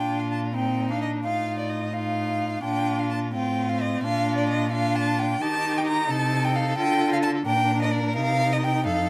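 A string quartet opens together in a spirited, graceful classical-period movement in 6/8, its warm first violin up front with the melody, played close with soft attacks, vibrato and expressive portamento. Beneath it, a rich second violin carries a supporting line, a smooth-topped viola supplies the accompaniment, and a clear, close cello anchors the bass, each bowed by a single player with focused tone and vibrato. Light reverb surrounds this short passage, cut from a longer piece.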